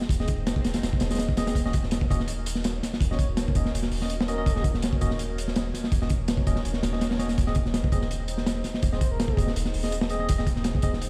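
Frenetic and raw, this short cut of jungle-flavored drum and bass runs at 165 BPM in Eb dorian, with a crunchy, saturated breakbeat kit of punchy kick, medium-tuned snare and hi-hat sitting up front over a deep, round dub sub bass. Behind them a warbly, nostalgic tape-like pad holds detuned chords moving from Ab/Eb to Ebm7 and back, soaked in chorus, phaser and 12-bit sampler grit, while a bright, clean tine electric piano stabs through dub echo. A breathy, flute-like synth lead with vibrato drifts in briefly at 3.1 seconds and again at 8.9 seconds, and the whole piece sounds as if blasted on a big sound system in a bare stone room.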